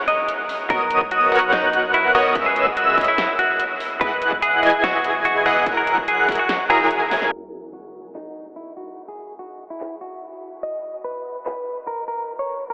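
Bright and euphoric, this half-time future bass excerpt at 145 BPM opens on a drop where an up-front, clean semi-hollow electric guitar carries the melody with sidechain pumping and tape echo, while a punchy, detuned supersaw stab riff, airy high arpeggios with chorus and analog delay, and a thick saturated sub bass in the background pump over Bmaj9, C#m7, Emaj9 and F#9. An overdriven pop kit with a fat snare, metallic hats and handclaps is joined by a punchy electronic kick, and a drum fill at 7.1 s leads into a background sub drop at 7.3 s as the harmony falls away and a filter sweep runs alongside the guitar. The dreamy mix is soaked in a huge 6.8-second reverb, shaded by a low-pass filter and a telephone-like tone.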